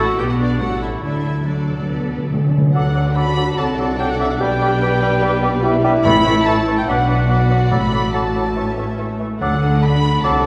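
In a straight 4/4 at 144 BPM, this quick classical-period movement for symphony orchestra moves in D major with a spirited, graceful character, and it is clearly a fragment of a longer piece. A dark, intimate violin section carries the melody with light vibrato and a soft attack, while a second, distant violin section adds an expressive line with portamento, joined by a clarinet and underpinned by a lush viola section, a focused cello section and a rich double bass section holding the bass. Very quiet timpani, struck with hard mallets, play a fill from 1.0 to 2.7 seconds and return later. At 2.7 seconds the texture fills out: a French horn section sustains chords, a bassoon with a punchy edge adds accompaniment, and an oboe contributes a high second line, followed a moment later by an airy concert flute. The harmony moves from B minor through A7 and D to G/B before closing back on D. A generous scoring-stage reverb gives the ensemble a roomy, hall-like glow.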